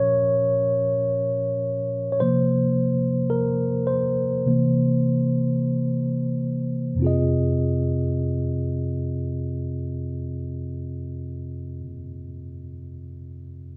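A slow pop excerpt in F minor, emotional and longing in mood, with a tempo between 45 and 59 BPM that slows down over the first 7.0 seconds. A mellow, clean tine electric piano plays alone up front, heard through built-in speakers and bathed in a recital hall reverb, moving from Bbm through C7sus4 and C7 before settling on Fm7 at 7.0 seconds. The piece is cut from a longer work, and the electric piano spans F2 to Eb5 as it carries the accompaniment to 13.8 seconds.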